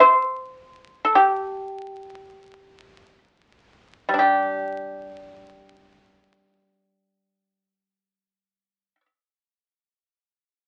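The sound is that of a very old 78 rpm record, with vinyl crackle, tube saturation and a dull top end that stops at 10.6 kHz, set in a short, reverberant studio space. Within that aged frame, a solo pipa plays in Chinese traditional style, alone and up front for the full 9.1 seconds of this fragment cut from a longer piece. Played with fingerpicks, the acoustic pipa sounds warm, dry and percussive, moving between G3 and C5 in free time, tuned to A4 = 437 Hz. The passage falls into two parts: the opening slows down across its first 4.2 seconds, and a second section follows until 9.0 seconds. The mood is pastoral and elegant despite the worn, crackling surface of the disc.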